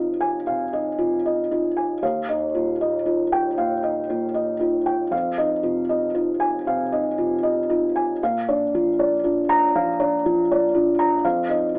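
Through a telephone-filtered sound and a moderate small-room reverb, this wistful, intimate fragment of neoclassical minimalist piano, cut from a longer piece, features a solo felt-muted upright, dark and soft with thick felt and placed up front, played in a free rubato over Fm7, Ebadd9 and Bb harmonies and tuned to A4 = 435 Hz.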